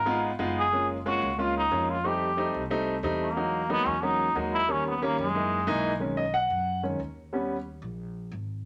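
A moderate studio reverb surrounds this short, sunny Afro-Cuban jazz passage at 182 BPM. A buzzy, metal-muted trombone sits up front with the melody until 5.8 seconds, over growly, woody pizzicato upright bass and clear, intimate grand piano comping with audible action noise. From 6.0 seconds the piano takes a brief solo over extended chords, keeping the danceable mood going.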